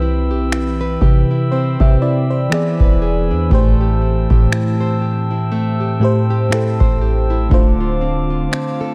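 A booming analog drum machine sits up front with a deep kick and finger snaps, entering at 0.5 seconds beneath a tender, romantic slice of contemporary R&B at a slow 60 BPM with a gentle sixteenth-note swing. A boomy, sine-like 808-style bass and a soft, round FM electric piano with chorus carry the Cmaj7, E7, Am7 and Dm7 harmony, while a fingerpicked nylon-string guitar plays classical-toned arpeggios through a digital delay. High above, a glassy, ethereal glass harmonica holds quiet sustained chords, all set in a digital ambience.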